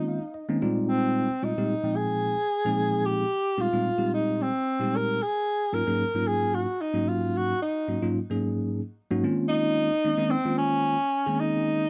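A swung 4/4 pulse at 111 BPM carries this short jazz fragment, lifted from a longer piece, with a driving yet nocturnal mood. A bell-like tine electric piano opens with a brief fill in the first 0.9 seconds, then settles into bright, clean accompaniment that sits direct and up front across a span from low Ab2 to high G5. The tenor saxophone plays the melody throughout, a warm jazz solo voice with vibrato and a breathy subtone, its tone distant and roomy even as it stays prominent in the mix. Suspended thirteenth chords on Eb, Bb and Ab shift beneath the horn, giving the passage an open, floating harmony. The whole thing has the dry, close sound of a 1970s-style studio session, touched with light reverb.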